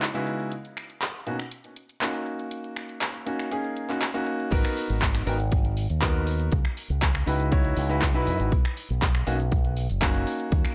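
Sensual and sleek, this nu-disco excerpt moves at 120 BPM in a straight 4/4 feel in G# minor, cut from a longer piece. A clear, natural grand piano sits up front from the start, laying down extended chords such as C#m11, a rootless Bmaj9 and D#m7, its sound colored by sidechain pumping and tape echo. Alongside it, an overdriven house drum kit with cabasa, crash cymbal, finger snaps, handclaps and hi-hat gives a layered, produced edge, re-recorded in a large room. At 4.5 seconds the drop arrives as a bright fingered electric bass with an envelope filter and a punchy, overdriven electronic kick enter together, carrying the harmony through G#m7 back to C#m11 and Bmaj9. The overall recording is dry and gritty, with the bass and piano placed close and present.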